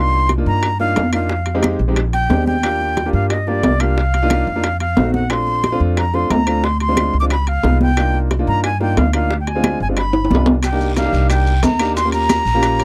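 Afro-Cuban jazz at a driving, sultry 180 BPM in C minor, this dry, close 1970s-style studio cut from a longer piece sets a breathy, bright flute melody, tongued with a straight and slightly unsteady tone, over clear grand piano chords and a thumpy, woody pizzicato upright bass up front. Ringing, high-tuned congas, round, low-tuned bongos played with soft hands, metal-shell timbales and background claves drive the groove. After a drum fill, a new section begins at 10.6 seconds where raspy, distant guiro and grainy, mellow maracas join in the background, the harmony moving from rich chords like Cm11 and Ebmaj9 toward Cm7 before the piano adds a brief fill at 12.6 seconds.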